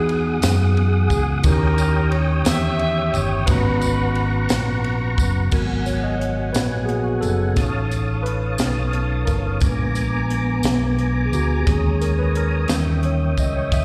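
Slow gospel in 6/8 at 59 BPM in G# minor, fervent and solemn, captured as a live gig through the venue's PA with recital-hall reverb and cut from a longer piece. A dark, smooth-topped horn section carries the melody with slapback echo until 4.5 seconds, over a clean tine electric piano, a clear tonewheel organ holding chords through a slow rotary speaker and chorus vibrato, a round, punchy fingered bass up front, a polished fusion kit with a high-tuned snare and punchy kick, and a jingly tambourine from 0.4 seconds. From 5.5 seconds the electric piano takes a solo over rich extended chords such as G#m9, A#7b9 and D#7b9.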